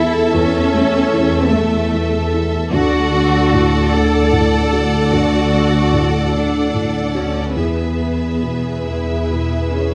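A felt-muted upright piano, soft and intimate with a dark, short-sustained tone, carries the accompaniment in this hopeful, tender cue from a cinematic orchestral score, moving in a rubato 6/8 feel. A distant, rich violin section sings the high melody over a lush second violin line, while violas fill the middle, cellos support the bass, and a woody, up-front double bass section anchors the low end, the strings all bowed with vibrato. The harmony moves from A/E to D at 2.7 seconds and to E at 7.6 seconds, all set in a moderate scoring-stage reverb.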